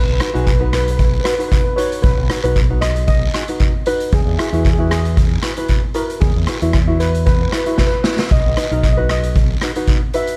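A shimmering double-seconds steel pan, played with medium rubber sticks and carrying a dark, smooth melody through plate reverb and analog delay, opens this carefree, festive calypso excerpt at 0.0 seconds alongside a bright, fingered electric bass pushed through an envelope filter. A light, thumb-plucked tenor ukulele with its own plate reverb, a raspy guiro and a polished, up-front street-band drum kit (boomy kick, medium-tuned snare, hi-hat and rim click in an airy big room) join to drive a swung 115 BPM groove in B major, moving from B to Esus2 and back. A drum fill arrives at 7.8 seconds, and the bass drops out at 9.5 seconds as the festive groove carries on.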